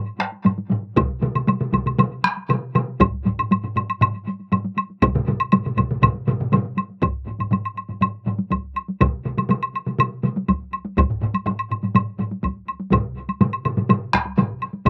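A taiko ensemble struck with hard sticks opens at 0.1 s, quickly joined by a second ensemble in a small room and a woody, close woodblock with a slapback echo at 0.5 s, setting a ceremonial, driving Japanese traditional groove in straight 4/4 around 121 BPM that speeds up throughout. At 1.0 s a third dry, up-front ensemble and a vintage, band-limited solo taiko line enter. Recorded outdoors with light reverb and cut from a longer piece, it moves from its opening section into a second at 7.0 s.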